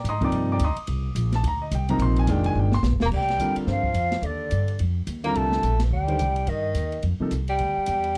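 Modal jazz with a cool, hypnotic feel, swinging at 215 BPM in F dorian: an up-front grand piano, with audible action noise and deep bass, comps over a woody, growly pizzicato upright bass and an acoustic drum kit with a boomy kick. A drum fill at 2.6 seconds leads into C dorian at 3.1 seconds, where an airy, distant silver flute takes the melody with a crisp, chiffy straight tone, over a distant tenor saxophone second line with vibrato and slapback echo, all captured in a dry, close 1970s-style studio sound.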